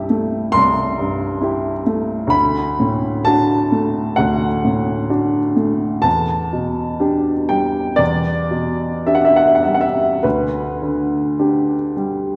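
Heard from further back in a scoring stage with a wet 2.0-second reverb, this brief fragment of a tender, nostalgic romantic nocturne features a solo warm upright piano, woody and intimate with audible action noise, unfolding in rubato 4/4 between C2 and C6 through Am7/C, D, Em7 and G/D.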